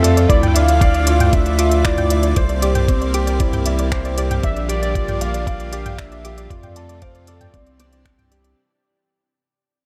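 A velvety synth lead with 12-bit sampler grit carries the melody of this moving, hypnotic piano-and-strings electronica at 116 BPM in 4/4, sung over a felt-muted upright piano riff, a lush detuned unison pad and a soft pluck arpeggio with chorus and digital delay, while a round, wave-folded analog bass with tube saturation sits up front. Crisp hats, finger snaps and toms come from an organic electronic kit, and a muffled, thumpy pitched-down kick arrives at 0.3 s as the pad, pluck and bass pump against it. This drop moves through Dmadd9, C7, Bb6, F and Cadd9 under light reverb and fades out from 0.3 s to 8.6 s.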